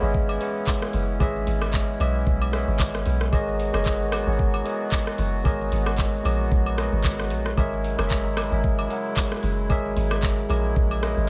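A 113 BPM amapiano groove with a 16th-note swing drives this late-night, deep excerpt, built on an up-front electronic drum kit with a knocking kick, metallic hats, handclaps, rim click and shaker re-recorded in a large room, and a round, dark log drum bass with a fast attack and decaying noise-layered tone. Over the chords C#m9, Bmaj7 and A#m7b5, a clean tine electric piano sounding through built-in speakers carries the accompaniment. A reedy, close-miked accordion holds sustained chords with slow beating and sidechain pumping. Acoustic agogo bells sit in the background from 0.3 s, and a barely audible electronic impact marks the opening between 0.5 and 1.2 s.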